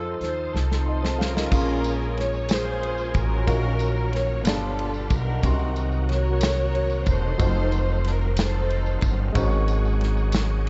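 Slow gospel in a straight 6/8, soulful and fervent, taken from a longer piece and bathed in an echo-heavy studio ambience with a soft, rolled-off top. A clear alto saxophone with jazz vibrato sounds only a brief note at the very start, while a dark French horn section holds soft-attack chords until 1.5 seconds, when a drum fill hands over to the main section. A dark, lush string section carries the melody with bowed vibrato and tape echo, as a shouting tonewheel organ, lightly overdriven through a slow rotary speaker with chorus vibrato and key click, sustains chords alongside a polished baby grand piano. The woody, pizzicato upright bass sits up front beside a natural country drum kit with a punchy kick, medium-tuned snare, hi-hat, ride and crash. A jingly tambourine with tape echo joins in the background from 1.5 seconds, and the harmony moves through rich minor ninths, a half-diminished chord and a flat-nine dominant before resting on a suspended chord.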